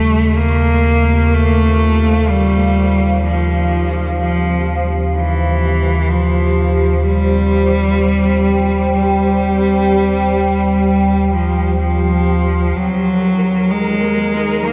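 A clear, smooth bowed cello sits up front, a single player carrying the melody with vibrato and a trace of delay in this cavernous, ominous dark ambient drone. Beneath it from the start, a deep rumbling drone washes through phaser and lush chorus, dark and ominous. At 1.1 seconds a moody, warbling pad enters with detuned, vintage-tinged sustained chords, softened by chorus. At 12.8 seconds the harmony moves from G7(no3) to Ebm7, and a filter sweep passes over the synth drone. A flickering, grainy granular texture appears at 13.2 seconds. A huge, wet reverb with a long tail and a dulled top end wraps the whole piece, which sounds cut from a longer work.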